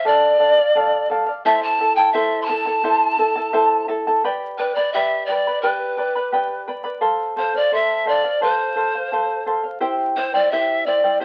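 The recording has the crackle and age of a very old 78 rpm record, with a moderate studio reverb giving the two instruments a modest sense of room. This wistful, melancholic Andean folk fragment, cut from a longer piece, moves in a straight 2/4 and sits on a slow drift of minor and major chords, from D minor and A minor toward G, F and C. A breathy, bright bamboo pan flute carries the melody, close-miked and up front, its reedy tone marked by tongued attacks, an audible chiff and vibrato. Beside it, an acoustic charango provides fingerpicked accompaniment, its double strings, some doubled at the octave, producing a mellow, shimmering bed that also sits forward in the mix. Both parts play throughout, and the harmony shifts to new ground at 4.2 seconds before closing on C at 9.8 seconds.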